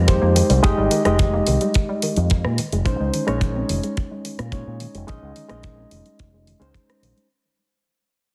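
A reedy, clean electric piano with slapback echo opens this cosmic, sleek nu-disco excerpt alongside a bright, up-front envelope-filtered fingered bass, moving from Fm11 to Bbm11 at 2.6 seconds as a tight, dry acoustic kick, an electronic pop kit with bright hi-hats and rim clicks, and a round analog pluck arpeggio in the background with chorus, analog delay, sidechain pumping and a filter sweep all sit in a small room under a heavily compressed radio sound that fades out across the whole 7.3 seconds.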